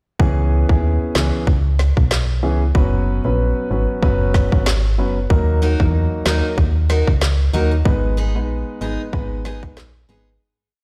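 A swung, syncopated dancehall beat drives this sultry, bouncy short piece, with a tight, overdriven electronic kit of kick, woody snare layered with handclaps and rim clicks up front beside a punchy, round FM bass sliding low, while a boxy grand piano with audible action noise plays syncopated chords, a bright picked steel-string acoustic guitar joins with off-beat chops at 5.6 seconds, and the whole verse sits in a stone-room reverb before fading out from 7.9 seconds.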